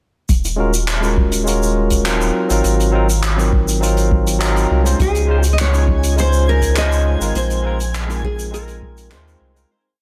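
A wistful sunset chillout piece in Eb dorian at 102 BPM opens at 0.3 s with a deep, round sine sub bass gliding through long notes, a soft overdriven electronic kick, and a brushed jazz kit playing a light lounge beat with closed hi-hat, shaker and handclaps. A bright, barky tine electric piano follows with dotted-rhythm rootless chords through a filter sweep and digital delay, moving through Ebm11, Ab13, Dbmaj9 and Bb9sus4. At 5.0 s a fingerpicked nylon-string guitar adds a classical, motif-based melody with tape echo, and from 5.8 s a faint twinkling granular shimmer holds a high note in the background as the dense, heavily limited mix fades out.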